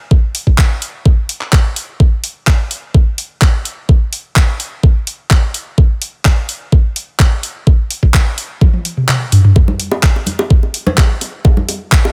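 Euphoric and hopeful, this house excerpt drives along at 127 BPM in a straight 4/4, built on an up-front, knocking electronic kick with an overdriven edge and the tight sound of a small room. A layered, tape-warm house kit of handclaps, hi-hat and toms rings in a large room, and a drum fill from 8.6 seconds, with the kick dropping out at 9.1 seconds, sets up the entry of bongos, congas and cowbell at 9.6 seconds. Those acoustic hand drums are struck with hard hands in a small room and pump against the sidechain, all under a digital ambience.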